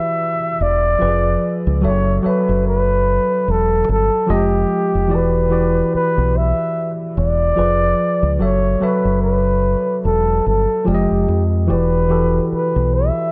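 Smooth and soulful, this slow neo-soul R&B cut at 73 BPM with a swung sixteenth feel in E dorian sets a breathy, whispered flugelhorn melody with light vibrato, scooped notes and a dub echo over a worn, slightly out-of-tune tine electric piano with light overdrive moving through Em9, Fdim7, F#m7 and Fm9, while a round, punchy fingered dub bass enters at 0.6 seconds, all in an echo-heavy mix with light reverb cut from a longer piece.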